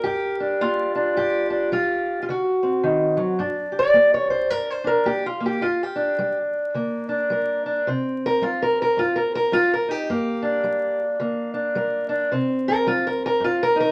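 A dark, boxy parlour steel-string acoustic guitar, fingerpicked and up front, carries this brooding, mournful acoustic country blues fragment in a swung 4/4, moving from Gm to D7 before stepping into a solo at 3.4 seconds that circles between Gm and C5 until 13.9 seconds, set in a moderate club reverb with a faint bed of vinyl crackle.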